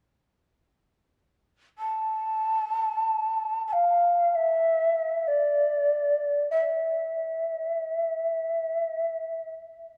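Japanese traditional chamber music in free time, calm and austere, this short fragment features a solo shakuhachi from 1.8 to 9.5 seconds, its airy, hollow bamboo tone carrying vibrato and a crisp attack with chiff between D5 and A5 in a dark production bathed in moderate church reverb.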